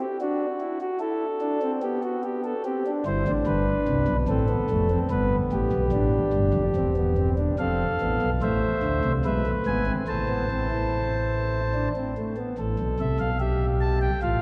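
A smooth, up-front chamber organ on its principal stop, with a touch of chiff, carries this stately, elegant baroque-style four-part fugue alone at 73 BPM in a straight 3/4, spanning E1 to A5 and moving from C major into A minor at 7.6 seconds, all set in a wet, lingering cathedral reverb with a dark, warm production in this short passage cut from a longer piece.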